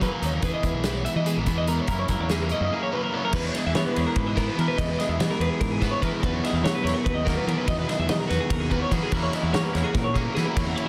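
This bright, wistful math rock and midwest emo passage opens with the full band together in a brisk 7/8 at 290 BPM in E lydian: a loose, roomy indie drum kit with dark cymbals and a tight kick, a scooped, twangy clean guitar, a double-tracked crunchy overdriven guitar riff and a growling fingered bass with overdrive. Above them, a compressed twelve-string electric guitar picks sparkling arpeggios through slapback echo and plate reverb. The harmony moves from Emaj7#11 and F#9 into Emaj7, Bmaj7 and F#7/E once the second section arrives at 3.3 seconds, inside a dense, heavily limited modern master with light reverb.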